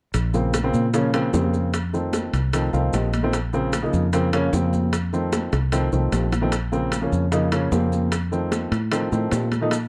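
A punchy, foam-muted fingered electric bass and a bed of percussion open this fiery, sultry Afro-Cuban jazz excerpt at 150 BPM in straight 4/4, with a woody, polished upright piano entering almost at once to carry the accompaniment in B-flat harmonic minor. The harmony alternates between Bbmadd9 and F7, the bass sitting up front with a bright, direct tone while the piano, equally present, ranges from its middle register into its upper reaches. Behind them, high-tuned congas with a thin-skinned, distant sound in a large room mix with tight, close and dry bongos played with soft hands, while grainy maracas and ringing metal-shelled timbales in a live room complete the percussion. The piano takes a fill at 2.5 seconds, and a drum fill arrives at 5.3 seconds. Light reverb and a dark, warm production give the whole passage, cut from a longer piece, a warm glow.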